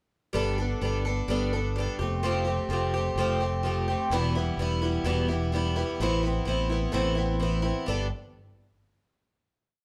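A straight 4/4 pulse drives this short folk rock and heartland rock piece with an open-road, nostalgic mood: an up-front, shimmering, octave-doubled picked twelve-string acoustic guitar strums eighths in open chord shapes over a growly, bright fingered electric bass playing a dotted figure, both running from 0.3 to 8.1 seconds through Gadd9, Fadd9, Em and Amadd9 before the band, heard live together in a large studio room with moderate reverb, arrives on a final Gadd9 chord at 7.9 seconds.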